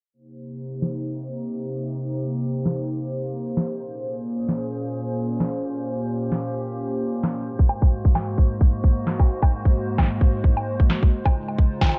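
IDM excerpt with a melancholic, cerebral mood and a swung, dark, dry production, where a hollow, flute-like pad with chorus and 12-bit sampler grit sustains chords from Cm7 through Bbm7 and Ab7 to Dbmaj7, a punchy analog-style electronic snare and bongos under a low-pass filter arrive at 0.8 s, a tight up-front electronic kick joins at 7.6 s, and a filter sweep runs across the drums throughout.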